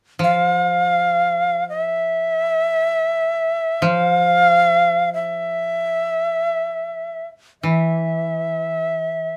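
Lightly reverberant, this brief cut from a longer piece of calm, austere Japanese traditional chamber music unfolds in free time, tuned to A4 = 438 Hz, with an up-front, breathy, reedy shakuhachi carrying the high melody with vibrato and a soft attack while a dry, woody koto, played with fingerpicks, accompanies quietly beneath it throughout.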